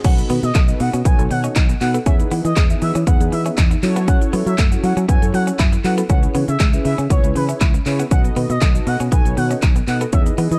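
An expressive, gliding sawtooth lead carries the melody with vibrato, chorus and dub echo, pumping against the beat alongside mellow, brassy synth chords in this bittersweet yet confident dance-pop drop, cut from a longer piece. A punchy, up-front house kit of kick, handclaps, metallic hi-hat, shaker and crash drives the groove over a round, fingered electric bass. A clean, direct electric guitar riff with lush chorus sits in the background, and a very quiet, woody mallet-like pluck traces arpeggios through a dark, warm, nearly dry mix moving from B7 through Emaj7, F#m7 and C#m7.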